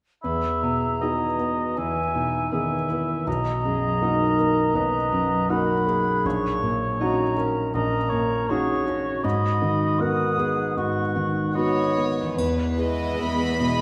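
In a rubato 4/4, this sorrowful, moving cinematic film-score passage opens with an intimate grand piano, its action noise audible up front, and a ringing fingerpicked harp in the background, while a clear clarinet, a mellow, distant oboe with light vibrato and a silvery straight-toned flute weave second lines until 12.0 s. At 11.6 s a dark studio violin section takes the melody, bowed sul tasto with a soft, floating attack. From 12.4 s a cello section holds a low bass and a faint triangle shimmers in the background; at 12.8 s a second violin section and woody, vibrato-laden violas join, all carried by a wet scoring-stage reverb.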